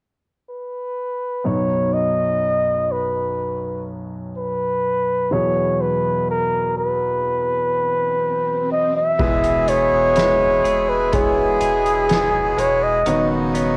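A homespun cassette recording with light small-room reverb frames this hopeful, tender pop ballad at 62 BPM, where a warm flugelhorn carries the melody up front with light vibrato and scooped notes over clear, polished grand piano moving from Badd9 to Eadd9. An electronic swell sits in the background from 7.8 seconds. At 9.2 seconds the band joins on an E chord: reedy, close-miked accordion sustaining chords, a bright, twangy clean electric guitar picking very quiet arpeggios, a round sine sub bass, and a soft-mallet drum kit with dark cymbals, a fat snare and a boomy kick.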